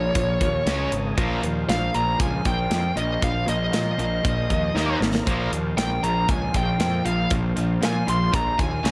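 Hard rock at 117 BPM in Bb dorian, aggressive and heavy, with an up-front distorted high-gain lead guitar carrying the melody through slapback echo and plate reverb, a growly fuzz bass, a tight metal drum kit entering at 0.2 s with a fill at 4.8 s, a very quiet bright high-gain guitar and a hollow-body overdriven guitar with phaser each playing a riff, and a gritty overdriven tonewheel organ holding chords through a slow rotary speaker in the background.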